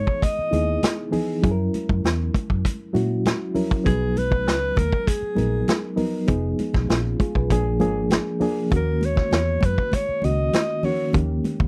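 A dry, close 1970s-style studio sound frames this short cut from a lush, bittersweet and smooth soul piece in 4/4 at 99 BPM, moving through chords from Emaj7 and F#7 to Bmaj7, Fm7b5, A#7 and D#m7 before landing on D#7 at 11.1 seconds. Up front, a breathy alto saxophone carries the jazz-style solo melody with light vibrato and a soft attack until 11.1 seconds, beside a reedy, worn and slightly out-of-tune electric piano whose lightly overdriven tone comes through its built-in speakers with harmonic tremolo. Underneath, a dark, round, foam-muted fingered electric bass and a punchy, gritty vintage acoustic drum kit with hi-hat, kick and snare hold the groove, while very quiet congas played with soft hands add a thin-skinned shimmer from 0.2 seconds.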